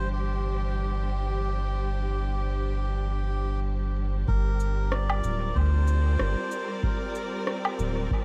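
Ambient dub at 94 BPM in 4/4 with a light 16th-note swing, this short cut from a longer piece sits in G dorian and feels hazy and deep. A round, soft sub bass sits up front from the start, its sustained tone giving the low end its weight, while a clear, bowed string section holds sustained chords with vibrato, moving from Cadd9/G to Gm7. Over them a reedy, breathy melodica carries the melody through a dub echo until about 7.4 seconds. An overdriven electronic shaker, rim click and woodblock, filtered and echoed, ticks along throughout, and a tape-toned electronic kick joins at 4.3 seconds to anchor the second half. The whole mix is echo-heavy and dusted with vinyl crackle, lending it a hazy atmosphere.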